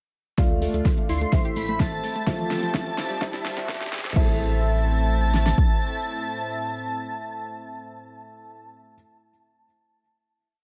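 This bittersweet, expansive progressive house piece in A minor opens at 0.4 s with a build: an up-front, overdriven four-on-the-floor kick and fat snare, a lighter layer of metallic hats, snare and crash cymbal, a grainy hand-played shaker in sixteenths, and a deep, saturated sub bass in a dotted rhythm. Above them, a lush, detuned pad holds sustained chords, a round analog pluck repeats a sixteenth-note riff over a pedal note in the background, and a dark, mellow baby grand piano plays held chords with syncopated pushes under a filter sweep, with the harmony moving through Dm, Am, Fmaj7 and C. At 127 BPM in straight 4/4, a drum fill and a very quiet riser drive the build, while from 1.1 s a velvety lead with vibrato sings motif-based phrases, doubled an octave higher by a soft supersaw. At 4.2 s the music lands on a final A minor chord; the shaker drops out just before it, and the drums and bass fall away soon after, leaving the pad, pluck, piano, lead and supersaw to ring out. 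Sidechain pumping moves the pad, pluck, piano, bass, supersaw and the lighter drum layer, tape echo trails the pluck, piano and supersaw, and the lead carries digital delay, all within a dark, warm production and light reverb.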